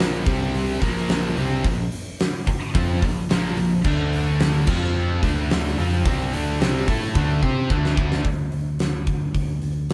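Recorded with light reverb as a band playing live in one room, this aggressive, driving hard rock passage sets a huge, airy arena drum kit up front, with a fat snare and punchy kick, beside a growly, amped picked electric bass and three background guitar riffs: one crunchy and overdriven, one scooped, double-tracked and high-gain, one tight and bright; a drum fill at 7.1 s leads to the guitars stopping at 8.2 s, leaving bass and drums to carry on to 9.9 s.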